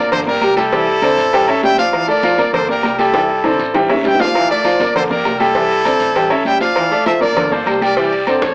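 A tight, up-front trumpet section carries the melody over brilliant grand piano from the very start of this driving, danceable salsa clip, while a woody, pizzicato upright bass with gut strings thumps in the background. A punchy, close-miked trombone section adds a dark second line with tape echo, and the percussion fills out the groove with thick-skinned, high-tuned congas, hard-handed cowbell and bongos, ringing metal-shell agogo bells and timbales, and a raspy guiro, with a drum fill from 3.1 to 4.3 seconds. The whole cut sits in a wet studio reverb and sounds like worn, warbling cassette tape heard through AM radio, with audible pitch drift.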